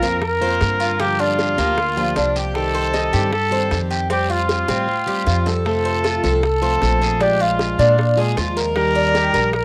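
Sunny and relaxed, this Cuban son and guajira snippet in Bb major moves at a brisk 155 BPM, with an up-front trumpet carrying a punchy, vintage-toned melody with light vibrato over a metallic, double-strung Cuban tres's arpeggios, a boxy picked swing-style guitar, a growly, woody pizzicato upright bass, a raspy guiro and tight, high-tuned bongos that join at 0.2 seconds, with a drum fill from 4.7 to 5.7 seconds, all captured in a home recording on cassette.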